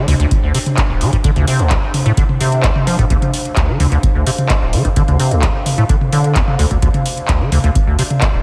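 A squelchy, resonant liquid acid bass riff leads this hypnotic, gritty acid house excerpt, its overdriven square-wave tone shaped by a filter sweep, chorus, sidechain pumping and a diffuse ambient delay. Behind it, a warbly tape-like pad sits in the background with a detuned, nostalgic lo-fi haze, its own chorus, reverb and pumping. A booming analog drum machine comes in at 0.1 s with handclaps, toms and metallic hats up front, and an electronic kick drum follows at 0.3 s with a deep, dry thud. The piece rests on a single Dm7 chord in a light digital ambience.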